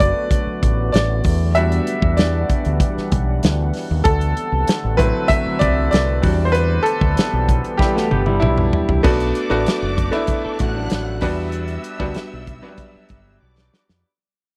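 A bright, worn concert grand piano leads this cinematic, bittersweet passage of lush 1970s-style soul over a deep, moody, warbling ambient pad with chorus and reverb, round overdriven fingered bass and a punchy modern drum kit with bright cymbals, as a lo-fi, slightly broken-up electric guitar riff enters at 7.8 seconds and a bowed string section with vibrato and portamento takes up a second line from 9.0 seconds through the fade-out, captured in a dry, close studio recording.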